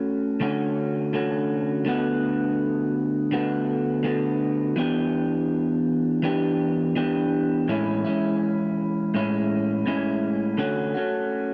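A lone electric guitar played through a small old amp carries this short indie pop fragment, cut from a longer piece, its picked tone slightly broken-up, compressed and sitting up front in the mix. A subtle chorus and a warbly pitch drift give the guitar a wistful, tape-worn character, and the whole passage carries the soft patina of cassette, with light reverb adding a gentle digital ambience. The mood is nostalgic and sunny, moving at an unhurried 82 BPM in 4/4 with a light swing on the sixteenths and settled in A major. The guitar ranges from A2 up to G4 as it moves through mellow seventh chords, starting on Dmaj7 and passing through Bm7/D, Em7 and Amaj7 before returning to Dmaj7 at 10.6 seconds. It plays alone for the full 11.5 seconds, a single relaxed, hazy passage.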